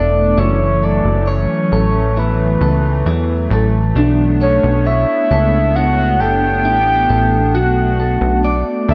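A round, octave-layered synth lead with chorus and vibrato carries the melody of this haunting, melancholic dream pop excerpt over a hollow, flute-like pad, chorused arpeggios from a slightly broken-up electric guitar with digital delay, and a punchy, plucky analog bass, set in a lush hall reverb as the harmony moves from F#m7 to Bm11 and Bm7, while a very quiet, metallic vibraphone with soft mallets rings from 4.4 s to 6.7 s.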